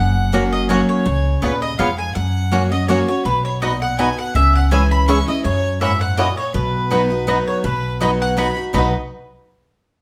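Rustic and virtuosic, this brief bluegrass cut from a longer piece swings along at 164 BPM in a lilting 3/4 waltz time in B major, with a live-in-one-room feel wrapped in lush studio reverb. A bright, double-strung mandolin carries the melody while a clear, biting fiddle with light vibrato and an airy bow plays a second line beneath it. A full-bodied dreadnought guitar sits up front and a woody, thumpy upright bass with gut strings anchors the low end. At 0.3 seconds a twangy, percussive fingerpicked banjo joins the melody and a second, warmer mandolin adds stabs, over chords moving through F#, C#7, B, C#m and F#7.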